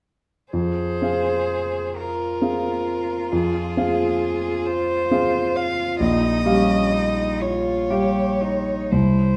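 Dark and wet with a recital-hall reverb of 1.3 seconds, this excerpt from a slow romantic movement for piano trio sits in F minor at 38-46 BPM in dotted quarters, its 6/8 pulse stretched by rubato. The mood is elegiac and yearning. A single bowed violin, rich and focused with vibrato, carries the melody up front between Ab4 and F5. A lone bowed cello, clear and even with its own vibrato, sounds more distant as a smooth second line from Db4 to Ab4. An up-front grand piano with a warm, vintage character spreads its accompaniment from Bb1 to F5. All three play together from 0.5 to 9.4 seconds, as the harmony moves from Fm to Gm7b5/Bb at 6.0 seconds.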